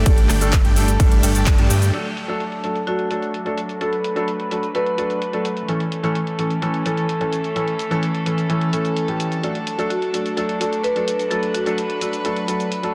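This euphoric, anthemic festival progressive house excerpt opens mid-drop, with a huge, detuned supersaw riff, a fat, saturated analog bass and a punchy, up-front electronic kick all pumping against the sidechain, and a band accent lands at 1.5 seconds. The kick drops out at 1.6 seconds, and at 1.9 seconds the supersaw and bass fall away, leaving a clear but worn concert grand piano carrying the accompaniment with delay, deep in the bass and present in front. Beneath it, a chamber string section holds soft-attacked, floating chords that sound distant and pure, pumping gently while a filter sweep works on them through to the end. A marimba with medium mallets plays a short, delayed melody, drops out, then returns at 9.9 seconds, while a big-room dance kit ticks along with metallic hats, handclaps, shaker, rim clicks, ride and crash, all filtered and set back in the mix. The chords move from Gsus2 to D, A and back to D, all bathed in moderate concert hall reverb and a dense, heavily limited modern master.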